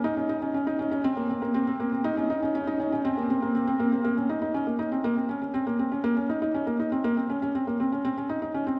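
Intimate and hypnotic, this short electronica excerpt in a straight 4/4 features a solo felt-muted upright piano, soft, mellow and vintage with a thin felt touch, sitting up front in a narrow range from Bb3 to Eb4 within the wet reverb of a scoring stage, moving from a build-up through the first 4.0 seconds into a drop that runs to 8.8 seconds.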